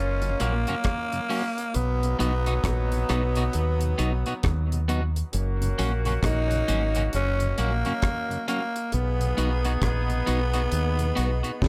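A growling, raspy tenor saxophone takes the melody from the very start of this laid-back roots reggae fragment, close-miked and up front with vibrato, dub echo and plate reverb. Beside it, a clear, vintage-toned horn section carries a tight second line in the background, while a round, dark fingered electric bass sits prominently underneath. At about 0.2 seconds a dry, smooth reggae drum kit joins with hi-hat, tight kick, rim click and a high-tuned snare, alongside a very quiet, mellow tonewheel organ with key click and rotary speaker. A picked electric guitar at the edge of break-up, compressed and given harmonic tremolo and dub echo, adds accompaniment from 0.4 seconds. The groove moves at an unhurried 67 BPM in 4/4 with a lilting sixteenth-note swing, trading between F# and B chords under a light room reverb.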